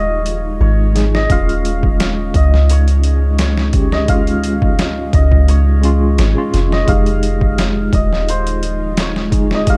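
Smoky and brooding, this short trip hop excerpt at 86 BPM sets a shimmering, tape-echoed santur melody over a worn, slightly out-of-tune tine electric piano with tremolo and sampler grit, mellow sustained string-machine cellos in the background, a deep, round 808-style bass up front, and gritty, pitched-down boom bap drums entering at 0.3 s, all moving through Fm7 and Eb7sus4 in a dark production.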